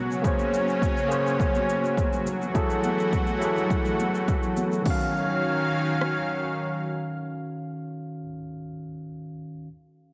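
Soaked in spring reverb and digital ambience, this echo-heavy snippet of wistful, relaxed sunset chillout in Eb minor at 104 BPM, with a light 16th-note swing, sets a lush, detuned, chorused unison pad of sustained chords beside a barky, gritty tine electric piano through a combo amp, low-pass filtered and tape-echoed with a filter sweep until 4.9 seconds, over a punchy, overdriven deep house kit of kick and rim click, layered electronic cabasa and crash cymbal, and distant congas in the background, as the harmony moves from Bbm9 through Gbm9 to Ebm9.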